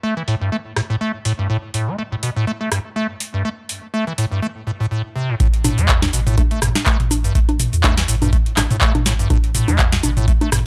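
A swung 4/4 groove at 123 BPM, with 55% swing on the sixteenths, drives this trippy, hypnotic acid house excerpt, tuned to A4 = 438 Hz. A squelchy, hollow square-wave acid bass plays the riff from the start, resonant with a fast-attack filter pluck and decaying notes, sitting up front with subtle chorus, analog delay and sidechain pumping. A booming analog drum machine enters at 0.3 seconds with congas, handclaps, hi-hat, rim click, shaker, toms and a crisp snare, its metallic hats and percussion low-pass filtered while a filter sweep runs across the drums, all up front with a short room on snare, clap and hats. At 5.4 seconds the track drops onto an A5 chord as a deep, tape-tinged electronic kick drum arrives with a round, sustained sine sub bass that pumps to the sidechain. Digital ambience surrounds a dry, gritty hardware sound.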